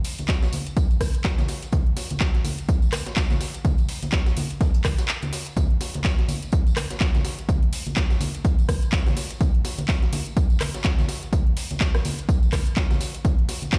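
Played through a big sound system in a bare room and washed in large studio reverb, this soulful, energetic house cut moves at 125 BPM in 4/4 with a 58% swing on the 16ths. A layered electronic house kit of handclaps, metallic hi-hats and rim clicks runs from the start alongside ringing acoustic tambourine and hard-hand congas, and an overdriven, punchy analog kick enters up front at 0.3 s. A gritty, compressed sampler-style breakbeat kit of hi-hat, medium-tuned snare and tambourine rides underneath, its hats and percussion pumping from sidechain and thinned by high-pass filtering, with a brief break at 5.1 s.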